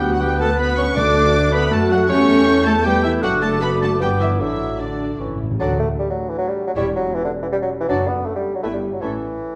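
A quick, cheerful and graceful classical-period movement for symphony orchestra in D major and 3/4 at 157 BPM, played with a rubato feel and cut from a longer piece. A close, lush muted violin section carries the veiled melody. Clarinet, airy flute, a warm oboe and a distant chamber violin section add second lines, while bassoon and violas accompany, a mellow horn section holds sustained chords, and muted cellos and double basses supply the bass. Round, soft-mallet timpani sound from 0.0 to 1.5 seconds and again with a fill at 5.2 seconds, all set in a dark production with recital hall reverb.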